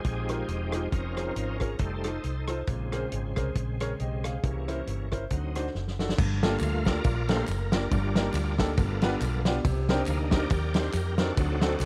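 A swung 4/4 groove drives this uptempo gospel excerpt, solemn yet soulful in mood. The tonewheel organ leads throughout, its bright, shouting chords carrying key click, light overdrive, chorus vibrato and a slow rotary speaker. Underneath, a dry, mid-forward acoustic drum kit with a fat snare and tight kick sits up front alongside a round, punchy fingered electric bass, while a smooth, vintage grand piano fills in the accompaniment. A drum fill at 5.7 seconds leads into a new key at 6.2 seconds, where close, dry tambourine and group handclaps join in the background. Rich extended and altered chords colour the harmony, and the dark production is finished with light reverb.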